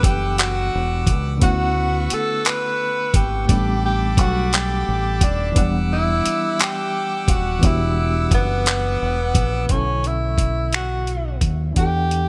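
A slow six-eight R&B groove at 58 beats per minute rolls along in a straight feel, carried by a dusty, sampler-style soul kit of finger snaps, handclaps, hi-hat and a thumpy kick, compressed and gritty with a tape-warm grain and sitting up front. Beneath it, a deep dub fingered electric bass lays down a dark, round low end, its direct-and-amped tone placed squarely in the foreground. A barky electric piano fills out the accompaniment, lightly overdriven and shimmering with fast tremolo as if heard through its built-in speakers, while an accordion holds sustained chords with a reedy, mid-forward voice until it stops at 9.7 seconds. Over this, a mellow tenor saxophone sings the melody in a jazz style, its soft attack and vibrato set in a distant, roomy space with a trailing delay. The mood is yearning and sultry, moving through rich extended chords in E dorian such as Em9, Dmaj13 and A9sus4, then shifting to Bm11 for a short closing passage of this fragment cut from a longer piece. 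Light reverb and a bright 1980s-style digital sheen frame the whole mix.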